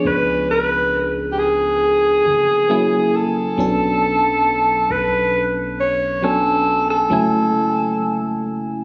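A straight 4/4 pulse at 68 BPM carries this moody, sensual contemporary R&B fragment in F# minor, where a mellow alto saxophone with light vibrato and digital delay sings a jazz-inflected melody up front over glassy, bell-like FM electric piano chords warbling with chorus and a deep, sine-toned 808-style bass that sustains from 0.1 s, the harmony moving from C#7b9 through Bm9 to F#m9, captured on a phone with club reverb, small-room ambience and lossy compression artefacts.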